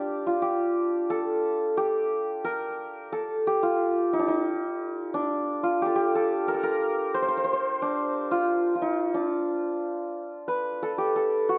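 Persian music in dastgah shur on D, this short passage is cut from a longer piece and carries a soulful, longing mood at a moderate 89 BPM in a straight 4/4. A solo santur plays throughout, from 0.0 to 11.6 seconds, moving within the range of D4 to C5. Its hammered, acoustic tone is warm, shimmering and ringing, and it sits up front in the sound. The production is dark and warm, with a light reverb around the instrument, and the tuning rests at A4 = 438 Hz. Most of the passage holds to its opening section until about 10.5 seconds, when a brief new section begins just before the cut.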